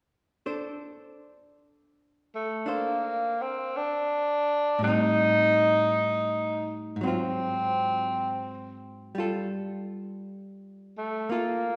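A jazz ballad at a slow 55 BPM in 4/4 with a swung eighth-note feel, this short excerpt cut from a longer piece carries a romantic, tender mood. A miked and amplified archtop guitar opens the accompaniment at 0.5 seconds, its clean, picked hollow-body tone dark and placed up front, ranging from Ab2 to C5. At 2.4 seconds a breathy tenor saxophone takes the melody, a vintage-flavoured subtone voice sitting up front and above the guitar in level, moving within a narrow span from A3 to Eb4. The harmony drifts through Amadd11, Am7b5, Ab6 and Gm9. Both parts play through to 11.8 seconds inside a recital hall reverb with a 1.7-second decay, lending the sound the spacious bloom of a church or concert hall.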